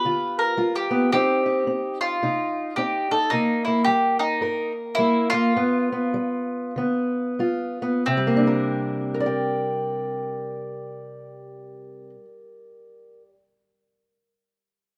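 A round, double-strung mandolin carries the melody up front, its picked lines sitting in a mid register and ringing out until 12.1 seconds. Beside it, a dark, boxy parlour-style steel-string guitar is fingerpicked as accompaniment, equally close and slightly louder, spanning from deep bass notes up into high treble. The feel is gritty, swaggering acoustic country blues in 4/4 with a loping swing on the eighth notes, moving at a relaxed 88 to 110 BPM and slowing down from 3.3 to 8.0 seconds. The harmony moves from G7 through F5 and C5 back to G7, then opens onto Csus2 as a second section begins at 8.0 seconds. Light reverb and a small-room ambience give the duo an intimate, rough home-demo sound, and the short clip is cut from a longer piece.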